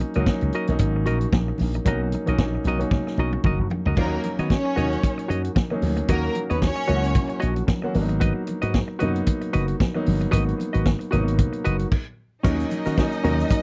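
A growly, punchy slap bass run through an envelope filter drives this glamorous disco excerpt, sitting up front beside a vintage drum kit with a punchy kick and dark cymbals that plays a fill from 2.9 to 4.0 seconds and a stop at 11.9 seconds. Alongside them, an intimate grand piano with audible action noise, a clean, compressed semi-hollow guitar with a warbly pitch drift, and very quiet, thin-skinned congas fill out the swung, driving groove, while a lush, bowed violin section with vibrato enters as the fill ends and returns at the close. A grainy shaker joins in the background for the final moments of this dry, close, 1970s-style studio recording.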